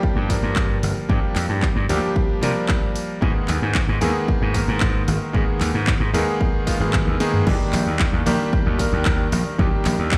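A bright, cutting electric grand piano with sidechain pumping and digital delay opens this groovy, sunny nu-disco cut at 113 BPM in Eb major, riding over a punchy, tube-saturated slap bass and an up-front, tape-warm electronic kick, with a house drum kit of punchy snare, warm hats, handclaps, toms and crash entering at 0.3 seconds, moving from Gm7 to Abmadd9 before a drum fill at 7.1 seconds tips into a drop on Ebmaj7 at 7.5 seconds, all heard as if played on a big sound system in a bare stone room.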